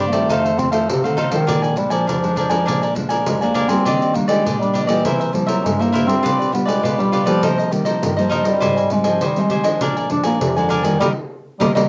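Festive and playful, this samba and choro excerpt features a distant, roomy bass clarinet soloing in jazz style with light vibrato, subtone and scooped notes over a crisp, bright, picked cavaquinho up front and a full-bodied, fingerpicked classical nylon-string guitar with audible finger squeak, those three carrying a cassette-tape tint, while a jingly pandeiro played with soft hands sits far back in a large room, the home cassette recording bathed in wet studio reverb and closing on a band accent at 11.0 s.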